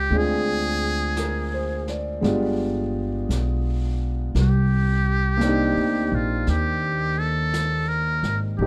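Late-night and tender, this slow jazz ballad excerpt swings gently in 4/4 over a progression moving from Dm7b5 through G7b9 to Cm9. Up front, a trumpet with a metal mute carries the melody in a buzzy, breathy solo voice with vibrato, alongside a clear concert grand piano with deep bass and long sustain and a woody pizzicato upright bass. A distant, roomy brush kit on snare and hi-hat sits far behind them from 0.1 seconds, all wrapped in light reverb and a dark production.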